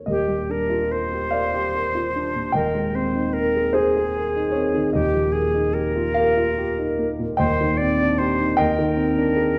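A wet recital-hall reverb with a 1.5-second decay surrounds this dark, warm recording, a short cut from a longer impressionist classical duo for flute and grand piano. The dark concert grand piano opens at 0.0 seconds as accompaniment, mellow and smooth with a deep bass and a vintage character, its notes stretching from Eb1 to G5 with a short sustain. The silver concert flute carries the melody from 0.1 seconds, airy with a crisp attack and a straight tone, moving within a narrow band from G4 to D5. The pulse is slow, at 49 beats per minute counted in dotted quarters in 6/8, with uneven beats and free rubato giving the line a floating, dreamy feel. Harmony stays rooted on Eb while moving through colored chords, from Ebmaj9 to Abmaj9/Eb and ending on Abmaj7#11/Eb, lending a luminous glow until both parts stop at 9.6 seconds.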